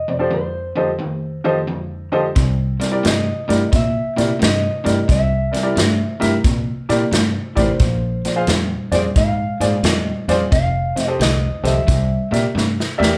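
An up-front country drum kit with a punchy kick and a round, dark fingered bass enter at 2.4 seconds beneath this soulful, swaggering electric blues shuffle, where a clear, woody, slightly detuned upright piano supplies accompaniment, an overdriven semi-hollow guitar plays the riff, and a lo-fi, slightly broken-up guitar through a small old amp carries the melody, the band playing live in one room with moderate studio reverb until a drum fill at 12.6 seconds ends this cut from a longer piece.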